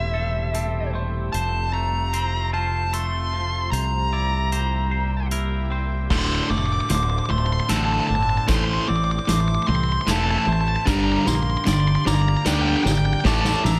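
A dark, overdriven lead guitar sings a melody up front over a shimmering, ethereal pad, two clean, twangy arpeggiated guitars with slapback echo and a growling, overdriven fingered bass, with a distant, roomy soft-mallet drum kit joining at 0.5 seconds in this brooding, cinematic post-rock passage in D minor at 76 BPM in 3/4. From 6.1 seconds the music builds under a long drum fill, as a bright, cranked stack guitar adds an overdriven riff over chords moving from Dm7 through Am7 and Gm7. A second stack guitar riff enters in the background at 10.9 seconds before the passage breaks off on A7sus4, all set in a moderate large studio reverb.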